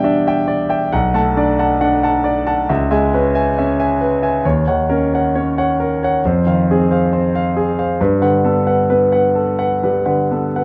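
A warm concert grand piano carries this short impressionist classical excerpt alone, its deep bass and natural tone sitting up front from the first moment to the last at 10.6 seconds. The mood is dreamy and hazy, with a slow pulse around 68 BPM in 4/4 that bends freely in a rubato feel. The harmony drifts through a chain of seventh chords, starting on Em7 and moving through Bm7, C#m7, Ebm7 and Fm7 before settling on Gmaj9 at 8.0 seconds. The playing spans a range from B1 up to A5, giving the low register real weight beneath the upper voicings. Close, detailed microphones capture the instrument's clarity, while a moderate recital hall reverb adds a soft halo around each chord. Cut from a longer piece, it plays as a single unbroken passage.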